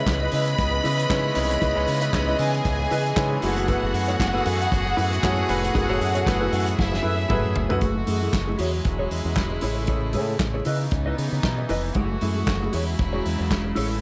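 A swung 116 BPM disco groove in 4/4 sets a glamorous, danceable mood, with a tight-kicked soul drum kit of handclaps, hi-hat, snare and toms up front beside a punchy fingered electric bass through an envelope filter. Over chords moving from C#m9 to F#m11, a smooth bowed violin section with vibrato carries the second line, while a clear, intimate baby grand with audible action noise sits in the background and a dark, clean electric guitar with lush chorus accompanies. A reedy chamber string section with gut-string tone sustains chords throughout. During a drum fill from 6.8 s to 7.8 s the violins and then the piano drop out, and the band cycles through F#m9, E69 and Amaj7, with the guitar and strings bathed in plate reverb, until 14.0 s in this excerpt from a longer piece.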